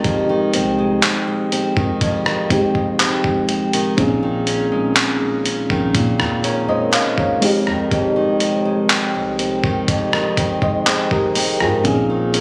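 Sensual and longing, this slow contemporary R&B passage in 4/4 with a straight feel is cut from a longer piece. A mellow FM electric piano carries the accompaniment with a dark, rounded tone, a noise layer and a chorus effect. It rocks between Fm7 and Bbm11 chords for the full 12.4 seconds. A small, fingerpicked nylon-string guitar plays arpeggios up front, its acoustic sound trailing a tape echo. Beneath them, a soft, sine-like 808-style bass sits deep in the background. A gritty, compressed sampler-style drum kit stands forward with a thumpy kick, rim click, hi-hat and handclaps, re-recorded in a large room for a tape-tinged, dusty character, and the whole mix is wrapped in light reverb and digital ambience with the roomy feel of a phone recording.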